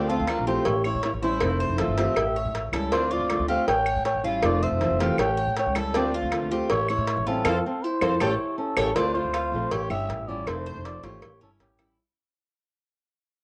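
A veiled, breathy cup-muted trumpet carries the melody in this sultry, nostalgic Cuban son and guajira excerpt at 159 BPM, over a full-bodied fingerpicked steel-string acoustic guitar, a background flamenco guitar second line with finger squeak, and bright, metallic arpeggios on the double-strung Cuban tres, all four with a cassette-tape tint, while a dark, growly pizzicato upright bass anchors the Dm7–A7–Fmaj7–A7 cycle and woody claves and a round, low-tuned cowbell join at 0.3 seconds, the home-recorded small room and moderate spring reverb framing a band accent from 7.5 seconds before the fade-out from 9.0 seconds.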